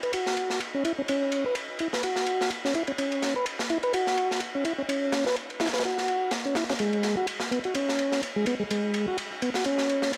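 A short, vinyl-crackled cut from a longer breakbeat piece sits in a moderate studio reverb, swaggering and funky at 126 BPM with a swung 16th-note feel. A mellow, round tonewheel organ with key click and vibrato plays an up-front riff through a slow rotary speaker, a low-pass filter and delay. Alongside it, a crunchy, saturated acoustic breakbeat kit with dark ride cymbal and a medium-tuned snare runs the full 10.2 seconds, gritty and rolled off at the top.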